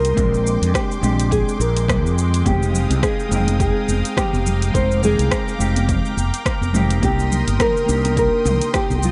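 A lightly reverberant, softened mix with a rounded top end opens this short sunset chillout cut from a longer piece, relaxed and smooth at 105 BPM in 4/4 with a gentle swing on the sixteenths, set in F dorian. A small, dark nylon-string guitar carries the fingerpicked melody through a digital delay, while a clean, fingered electric guitar supplies accompaniment roughened by vintage 12-bit sampler grit and its own delay. Beneath them, a lush, detuned sawtooth unison pad holds airy sustained chords through chorus and phaser, and a round, tube-saturated fretless bass sits up front with a punchy, direct tone. An overdriven deep house kit of hi-hat, rim click, shaker and toms is joined by a punchy, layered electronic kick from 0.2 seconds, both bathed in studio reverb, and very quiet, soft-handed congas enter at 2.5 seconds. From 3.0 seconds a glassy sine texture of drifting overtones hovers in the background as the harmony moves from Bb13 to Fm9 and on to Cm7.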